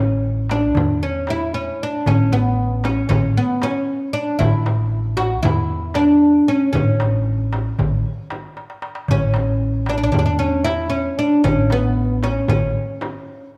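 Dark, warm production and a moderate recital hall reverb frame this stately fragment of Turkish makam ensemble music in 9/8 with a straight feel. Up front, a bright, woody, fretless oud with double strings carries the plectrum-plucked melody over the thumpy pizzicato of a steel-strung upright bass, while a crisp, high, metal-shell darbuka and a small frame drum, both played with soft hands, supply the percussion. A drum fill arrives at 8.6 seconds, and the bass stops at 12.7 seconds, shortly before the oud finishes.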